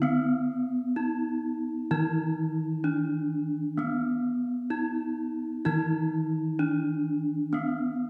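A bright bronze metallophone struck with a horn mallet carries the melody up front in this serene, shimmering gamelan passage cut from a longer piece, joined throughout by a second metallophone played with a wooden mallet in the lower accompaniment, both giving a metallic ring and the beats of paired tuning inside the reverberant space of a church or concert hall.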